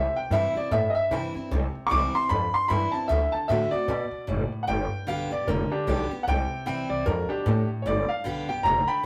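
A clear, woody upright piano leads this rollicking, retro rockabilly excerpt at a swung 151 BPM in G mixolydian, taking a solo turn through the first 4.7 seconds over a bright, full-bodied picked steel-string acoustic guitar and a dark, thumpy pizzicato upright bass on gut strings, with the piano and bass up front as the chords move through C, D7 and G, all heard in a rough rehearsal-room recording with tube saturation and a moderate stone-room reverb.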